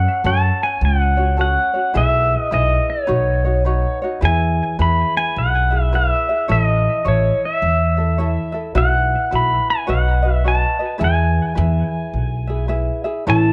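Sunny and languid, this excerpt of Hawaiian music in E major moves at a lazy 106 BPM with a swung feel, as an up-front electric pedal steel guitar carries the melody with clean, fingerpicked slide lines, volume swells, plate reverb and tape echo, over a light fingerpicked tenor ukulele and a woody, growly pizzicato upright bass, while a ringing vibraphone with medium mallets sounds a single E4 at 13.3 seconds, all in a small, intimate room.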